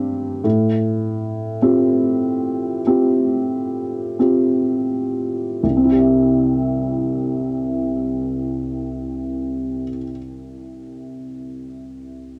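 Classical in feel, this tender, intimate piece unfolds at a slow, rubato pace of roughly 41-52 BPM in 4/4, in C major. A felt-muted upright piano carries the accompaniment alone from 0.0 to 12.4 seconds, its tone soft, mellow and dark with a boxy, up-front closeness that spans from C2 to E5. The opening passage slows down through its first 5.6 seconds, resting on an Fadd9/A chord before settling onto C as the second section begins at 5.6 seconds. Light reverb surrounds the instrument, while the sound carries the worn character of old cassette tape, with a warbly pitch drift that lends a fragile, nostalgic quality. Cut from a longer piece, it feels like a brief, private glimpse into a quiet moment.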